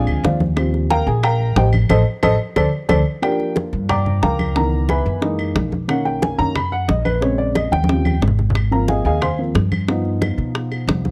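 A dark, mellow upright piano with audible action noise and a slightly detuned character takes the solo from the first moment, up front beside a thumpy pizzicato upright bass in this danceable, sunny Afro-Cuban jazz passage cut from a longer piece. Round, low-tuned bongos and thick-skinned congas played with soft hands sit close and dry, the congas in the background, while woody claves sound distant in a large room. The band lands an accent at 1.9 seconds and drum fills arrive at 2.4 and 7.7 seconds, within a dry, close 1970s-style small-room studio sound.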